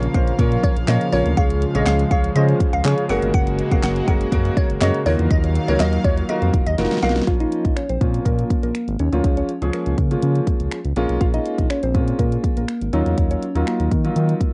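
This confident, driving dance-pop excerpt opens on a drop, with a glassy wavetable pluck carrying the melody over a clear baby grand piano, a shimmering pulse-width pad, a round analog bass and a punchy pop drum kit. The pluck's crystalline, nasal tone passes through chorus, cassette tape and tape echo, while the piano, pad and bass all pump with the sidechain against the steady straight beat. Up front, the layered kit mixes finger snaps, handclaps, hi-hat, kick and a fat snare, and a drum fill at 6.8 seconds leads into the second half. At 7.3 seconds the pluck and pad give way to a gentle, keys-like FM lead in a lower register, softened by chorus and cassette tape, as the dark, deep bass and open piano carry on beneath it. The whole excerpt has the light reverb and dulled top end of a home cassette recording, which gives its polished production a retro haze.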